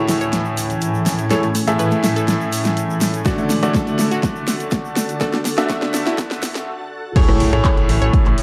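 A shimmering, ethereal pad, a round analog pluck with chorus and delay, and a bright, intimate baby grand piano playing stabs up front open this expansive, uplifting progressive house build-up, soon joined by an overdriven deep house kit with a fat snare and a grainy tube shaker in the background, then a punchy electronic kick from 3.3 s, before the drop at 7.2 s brings a very quiet impact and a thick sawtooth analog bass, with the pad, pluck, piano and bass pumping in a dark, lightly reverberant mix.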